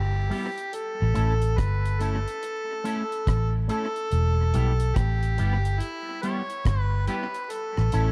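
A slow roots reggae groove at 71 BPM in 4/4, with a 63% swing on the sixteenths, sets a hypnotic, meditative mood in E dorian across this short 8.1-second cut from a longer piece. The vintage muted fingered electric bass sits up front from the first moment, dark, round and punchy with a foam-muted thud, while the deep reggae drum kit joins at 0.3 seconds with hi-hat, tight kick and rim click, its dry, rolled-off tone trailed by tape echo. Also entering at 0.3 seconds, the electric guitar with an envelope filter adds a clean, picked, twangy accompaniment with a scooped quality, colored by analog chorus and dub echo. Leading the way is an overdriven harmonica, amplified and gritty with light vibrato and tongue slaps, carrying the melody up front through dub echo. The chords move between Em and A over a small-room ambience with light reverb, and the echo-heavy mix is dusted with vinyl crackle.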